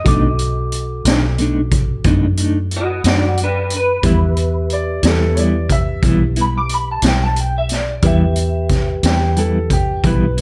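A gritty, saturated garage drum kit with a boomy kick and high-tuned snare sits up front in this brooding, soulful slow blues fragment in E minor, bathed in light reverb and moving at 60 BPM in a straight 12/8 over a B7#9 chord that resolves to Em at 4.0 seconds. A slightly broken-up, lo-fi electric guitar through a small old amp carries the melody with ensemble chorus, while a worn, slightly out-of-tune tine electric piano with light overdrive, a dark, clean semi-hollow guitar with tremolo, and a round, punchy foam-muted bass fill out the accompaniment. At 4.7 seconds a brilliant, woody upright piano enters with a second line, its long sustain ringing over the band.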